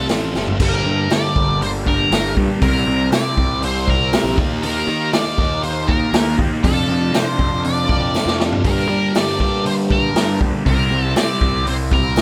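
Dark and trippy, this psychedelic rock piece sounds like a band playing live in one room, with moderate reverb. A double-tracked, phaser-treated thick fuzz guitar drives the riff over a bright, overdriven fuzz bass and an up-front vintage drum kit with a punchy kick, a medium-tuned snare and a rolled-off top, which plays fills at 0.3 and 8.1 seconds. Up front, an octave-fuzz lead guitar with wah carries the melody, while a buzzy combo organ with light vibrato holds sustained chords in the background and a jingly tambourine sits very quietly.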